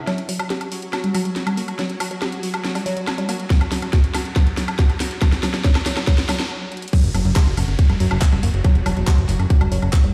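A tight, overdriven electronic kick drum sits up front from 3.5 seconds in this alien, hypnotic psychedelic trance passage at 140 BPM, cut from a longer piece, while a garage drum kit with a cracking snare, handclaps, hi-hat, woodblock and crash cymbal runs a drum fill through a build-up as a woody, wave-folded pluck riff with chorus and delay undergoes a filter sweep over a bright, pulsing gated texture in the background and very quiet swell, riser and downlifter effects. After a stop at 6.5 seconds, the drop arrives at 6.9 seconds on an F#5 chord, and a fat, thick analog bass with a sawtooth edge enters just after at 7.0 seconds, all heard in a bare stone room on a big sound system.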